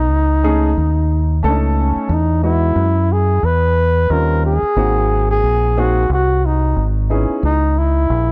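A lightly swung sixteenth-note groove in 4/4 sets the pulse for this cool, smoky hip hop fragment, lifted from a longer piece. A deep dub fingered electric bass sits up front from the first moment, round and punchy with a direct, amped tone that anchors the low end. A breathy flugelhorn carries the jazz-style melody as a solo voice, mellow with gentle vibrato, scooped notes and a smooth top, its lines trailed by an analog delay. A dark baby grand piano enters at 0.4 seconds and fills in the harmony with long-sustaining chords until 7.5 seconds, passing from a rootless B9 through Emaj7 and G#9 before settling on C#madd9. A small room ambience gives the whole passage an intimate, late-night closeness.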